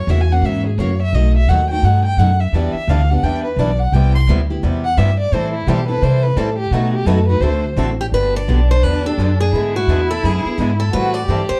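A dark studio sound with moderate reverb frames this swinging, playful gypsy-jazz passage at 172 BPM, cut from a longer piece, its harmony starting in E minor. A thumpy, woody upright bass with gut strings sits up front beside a bright, finger-squeaking steel-string rhythm guitar, while an expressive bowed violin takes a close, vibrato-rich solo full of soft-attack portamento, and a boxy swing-style guitar joins the accompaniment at 2.5 s. Near the end, at 8.0 s, a second picked steel-string guitar with an auditorium sheen takes up the melody as the harmony turns toward G major.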